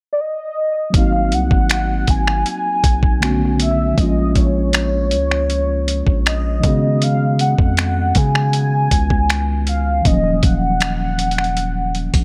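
A velvety, detuned synth lead with chorus and delay opens this sensual, longing contemporary R&B excerpt at 0.1 s, carrying the melody up front. From 0.9 s a mellow, clean tine electric piano plays accompaniment beneath it, a deep sine 808-style bass holds long, decaying notes, and a gritty, compressed sampler-style drum kit of thumpy kick, hi-hat and finger snaps sits forward, all set in a digital ambience. Extended chords such as Ab9, Db9sus4 and Ebm9 give the passage its yearning colour.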